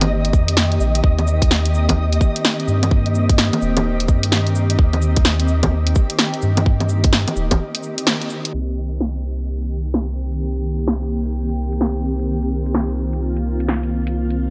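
A swung 128 BPM future garage groove in C minor opens the excerpt, with a tight, up-front electronic kick and a layered garage kit of cracking snare, filtered hi-hat, bongos and cabasa carrying it until the kick drops out at 7.6 seconds for a short break. Beneath them a deep, round, soft dub sub bass holds the low end while a cloudy, evolving granular pad pumps against the beat on sustained Cm7 and Eb6 chords, joined until 8.6 seconds by a flickering, grainy, detuned texture high above. The mood stays rainy and ghostly as a filter sweep runs from 8.5 seconds over the final stretch in light digital ambience, in a passage cut from a longer piece.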